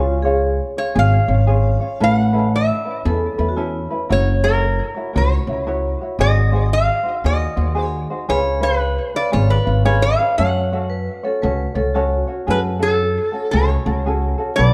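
Dark, warm production in a moderate recital-hall reverb frames this sunny, dreamy swung Hawaiian excerpt, where a bright, nasal lap resonator guitar played with slide and fingerpicks carries the up-front melody through tape echo from 0.8 seconds. A ringing, airy vibraphone with fast motor vibrato adds a metallic second line until 4.0 seconds and returns at 10.9 seconds, while a light, thumb-plucked ukulele plays accompaniment over a woody, growly pizzicato upright bass on steel strings, also up front.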